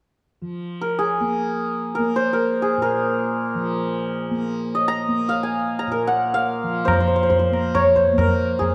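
A buzzing tanpura drone opens this solemn, introspective excerpt of Hindustani classical music, joined at 0.8 s by an up-front santur whose bright, ringing hammered tones carry the melody in free time. At 6.9 s a high-tuned tabla with a short ring enters close in the mix, while the tanpura stays softly plucked beneath. The dark production is tuned to A4 = 439 Hz and sits in a moderate recital hall reverb.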